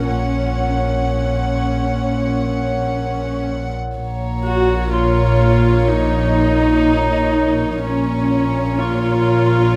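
Cinematic suspense film score at 62 BPM in Bb minor, ominous and uneasy, where a small chamber string section (violins carrying a soft, sul tasto melody, violas up front with vibrato, and cellos and double basses holding the bass) sits over glassy, ethereal glass harmonica chords, joined from 1.6 s by a very quiet, ringing concert harp high above, all captured with close, detailed microphones and light reverb as the harmony moves from Gb/Bb to Bb minor at 4.0 s.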